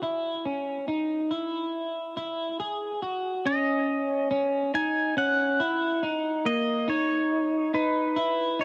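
A clean electric guitar opens alone, picking hazy arpeggios over C#m at a slow 70 BPM in straight 4/4, its tone softened by lush chorus, a low-pass filter, cassette tape coloring and analog delay. This short dream pop fragment, cut from a longer piece, carries a melancholic, hazy mood. At 3.5 seconds a pedal steel guitar enters with the melody, played with fingerpicks and slide, its volume swells sitting up front alongside the guitar and trailing through cassette tape grit and analog delay. The harmony moves from C#m to D#m7 as the steel comes in, then settles on B at 6.9 seconds. Both instruments sound compressed and warm, held in a small room with a short, moderate reverb and the soft, worn character of a home cassette recording, tuned slightly sharp of standard pitch.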